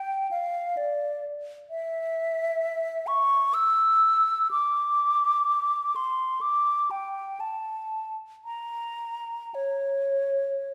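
A lone silver concert flute opens the recording at 0.0 seconds and carries the whole classical fragment by itself, playing in a free, expressive rubato within a triple metre. Its tone is airy and hollow, with a mellow metallic sheen, and vibrato colours the notes while tongued attacks give each phrase a clear start. The line moves between C#5 and E6, and the mood is lonely and mournful throughout. The flute sits up front, yet a lush recital hall reverb trails behind it, placing the listener further back in the room and lending the sound a spacious, lingering decay. Cut from a longer piece, this brief passage ends at 10.7 seconds.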